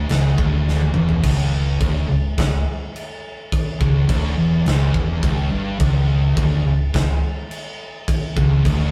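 This is a heavy, ominous stoner and doom metal fragment, cut from a longer piece, moving at a steady, straight pace in 4/4. Two thick fuzz guitars play the riff low in their range, their dark, distorted picking sitting in the background of the mix. A mellow fretless electric bass, amped with overdrive and round in tone, adds weight an octave beneath them. Up front, a big acoustic rock kit drives the music with a punchy kick, a medium-tuned snare, toms and bright crash cymbals, and it plays a fill from 0.7 to 1.2 seconds. The band sounds as if it is playing live together in one room, with moderate studio reverb giving the heavy sound some air.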